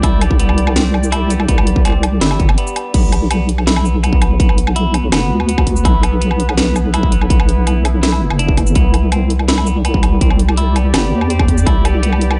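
Dark and heavy, this half-time drum and bass cut has a warm, murky production with light reverb and a rolled-off top end that keeps the sound close and shadowy. A deep, wobbling bass sits up front, its detuned square and sine tones compressed and thickened with chorus, while a distorted electronic kick, tape-warm and up front, anchors the low end until it drops out at 11.7 seconds. The layered drum kit carries an overdriven edge, with a cracking snare, bright hi-hats, shaker, woodblock and crash cymbal. Behind them, a moody ambient pad holds evolving sustained chords, its detuned sawtooth unison and sub octave softened by chorus and built-in reverb and shaped by sidechain pumping. A clean, picked semi-hollow electric guitar adds bright, compressed arpeggios trailed by tape echo, as the harmony moves from C to Bm at 2.9 seconds, just after a brief break, and back to C at 8.8 seconds.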